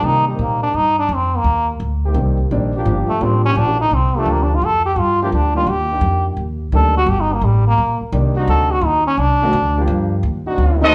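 A swung 4/4 pulse at 171 BPM drives this short, dramatic and sultry jazz passage in G minor, cut from a longer piece. A muted trombone carries the solo melody from the start until 9.9 seconds, its metal mute giving a buzzy, thin, brilliant edge with vibrato, sitting up front. Beneath it, a trombone section holds soft-attacked sustained chords with light vibrato, while a woody, thumpy pizzicato upright bass on steel strings anchors the low end. A concert grand piano with deep bass accompanies, dropping out briefly and returning at 5.5 seconds as the harmony moves from Cm7 through Gm7 and Ebmaj7 to a D7b9 that resolves back to Gm7. At 10.8 seconds a clear, tight trumpet section enters with the melody, joined by a mellow trombone section on a second line, and a large studio reverb places the ensemble further back in the room.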